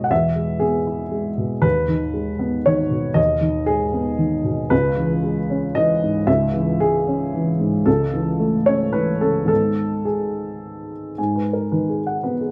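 Neoclassical minimalist piano in a wistful, reflective mood, this short passage is cut from a longer piece and moves in a flowing triple metre with a free, rubato feel. A single upright piano carries the whole performance, its tone dark, mellow and woody, with a slightly detuned character that adds a homely, worn quality. The instrument sits up front in the sound, reaching from deep bass notes to the upper middle of the keyboard. The harmony drifts from E through G#m/D#, C#m7 and A/C# before settling on G#m, and a brief new passage opens at 11.2 s on G#m7. The piano was captured live in one room and bathed in a wet studio reverb with a short decay, which gives the intimate playing a soft halo.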